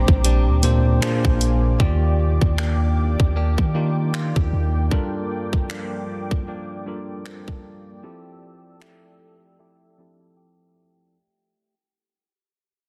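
Romantic and smooth, this short contemporary R&B cut in F major sways at 77 BPM with a swung 16th feel, built on an up-front, bell-like tine electric piano over a mellow, detuned sawtooth pad that pumps with chorus. A bright, scooped clean electric guitar picks arpeggios with tape echo in the background, while a deep, boomy sine 808 bass drops out at 4.9 seconds and a tight electronic kit of finger snaps, bright hi-hat and kick plays until 9.0 seconds. Lush chords such as Ebmaj7, Gm7 and Fmaj9 drift beneath a filter sweep and a fade-out in a dry, dense, heavily limited mix, ending in a brief break at 10.4 seconds.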